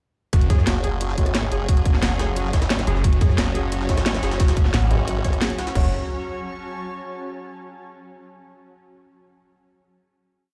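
The sound is loud and dry, as if played through a big sound system in a bare room with a large studio reverb behind it. This is a dark, futuristic piece of technical drum and bass, built around a short drop that runs from 0.3 seconds to 5.8 seconds before settling on a final chord. Up front, an overdriven electronic kick punches through a tight kit with a cracking snare, bright hats, rim clicks and crash, while a gritty, pitched-up sampler-style breakbeat loop with edits sits in the background. Two basses dominate: a snarling, detuned sawtooth bass with chopped, distorted phrases and sidechain pumping, and a formant-sweep wobble bass whose modulated phrases change wobble speed, thickened by chorus and tube saturation. Underneath, a swarming, wave-folded drone holds sustained chords while a blurred granular cloud pad slowly shifts its chords, lingering until 7.1 seconds. Meanwhile a soft, felt-muted upright piano repeats a 16-step arpeggio through tape echo, and a very quiet brass ensemble adds sparse chord stabs with light vibrato.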